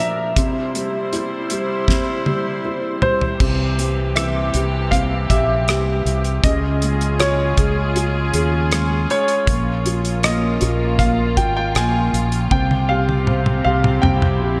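In this melancholic, longing pop ballad fragment, a baby grand piano carries the melody through analog chorus and delay over a soft, boxy felt-muted upright piano and reedy bowed strings with light vibrato, joined at 0.4 s by a damped 70s drum kit with a fat snare and at 3.4 s by a round, punchy fretless electric bass, all in a dreamy mix soaked in cathedral reverb.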